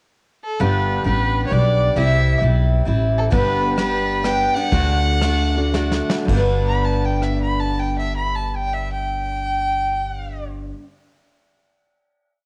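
A home recording on cassette with a moderate room reverb and studio ambience carries this short, nostalgic, easygoing honky-tonk waltz with a swung lilt, opening on a pickup before the clear, focused fiddle takes a solo of bluesy licks with light vibrato. A bright, full-bodied dreadnought strums open chord shapes in eighths while the woody pizzicato upright bass walks up between roots and fifths. A soft brush kit joins at 3.3 seconds as the tune slows down, adds a fill, and the band settles onto a final chord at 6.3 seconds.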